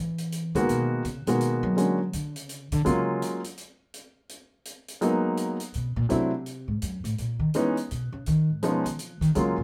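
A woody, pizzicato upright bass opens this moody, late-night excerpt from a jazz piano trio at 0.0 seconds, soon joined by a natural-sounding acoustic hi-hat and, at 0.6 seconds, a warm baby grand piano with short sustain that carries the melody. In a brisk 166 BPM waltz with a swung feel, the bass and piano sit up front while the hi-hat sits much lower in the mix. The bass takes a solo across the excerpt, dropping out briefly and returning at 5.8 seconds, over rich extended harmonies such as Abm9, Dbadd11, G#m9 and C#7sus2, all in a light reverb.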